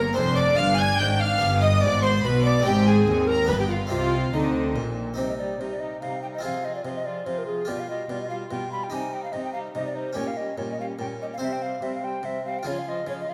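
This is a classical, baroque-style concerto movement in triple time, heard as a fragment of a longer work, with a driving, dramatic character. A tenor recorder carries the solo line from 0.2 seconds, its hollow, airy wooden tone marked by vibrato and a tongued chiff. Alongside it, a period-style violin section plays the melody with gut-string richness, light vibrato and a smooth top, while a second violin section adds a close, warm second line. A nasal, dark viola section and a bright, plucked Italian-style harpsichord fill in the accompaniment. A distant, reedy cello section holds the bass throughout, joined by a double bass section that drops out at 5.2 seconds as the music moves into a new section. The whole ensemble sits in a moderate recital hall reverb.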